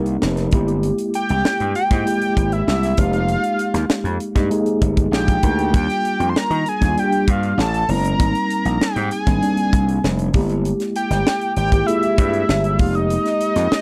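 A fat, detuned analog synth lead with phaser, slapback echo and vibrato carries the melody from 1.2 seconds over a gritty, overdriven slap bass, a tight, dry funk kit with a high-tuned snare, and mellow tine electric piano chords through a chorus effect, giving this breezy, urban slice of polished 1980s jazz-funk pop a close, lightly reverberant studio sound as it moves through lush extended harmonies like Abmaj9, Fm11 and Gm6.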